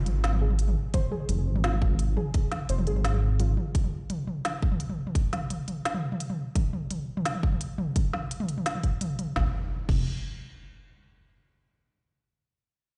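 Spacious and cinematic, this half-time drum and bass excerpt at 171 BPM sits on an F minor chord. A warbling, lo-fi pluck with chorus, cassette tape and tape echo plays faint arpeggios until 3.9 seconds over a deep, rumbling detuned saw bass, while up-front electronic drums, a woody snare, smooth hats, crashes and toms with small room reverb, are joined at 0.9 seconds by a hard-clipped, tape-tinged kick. The electronic downlifter and impact mark the opening and return with the bass at 9.4 seconds, where the chord drops out, all set in a large studio reverb with a dull top end, as if played on a big sound system in a bare room.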